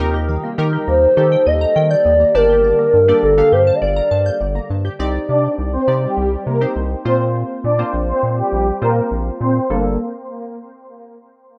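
This short cut from a longer piece has the rough feel of a home demo mix, with a moderate studio reverb around the parts. It is an energetic, confident pop groove in G minor at 102 BPM in a straight 4/4, moving from Eb through G minor add9 to C minor add9 and Bb sus2. A deep, round analog bass sits up front under a punchy, funky polysynth comp with chorus and a low-pass filter. In the opening half, an ethereal FM pad with ensemble chorus stays mellow in the background while a crystalline wavetable pluck warbles through chorused, delayed arpeggios. A hollow, woody clarinet-like synth lead carries the melody from 0.9 seconds, soft and dark with vibrato. At 5.3 seconds an evolving, detuned supersaw swell takes over the melody through a low-pass filter and delay, as a filter sweep runs through that stretch.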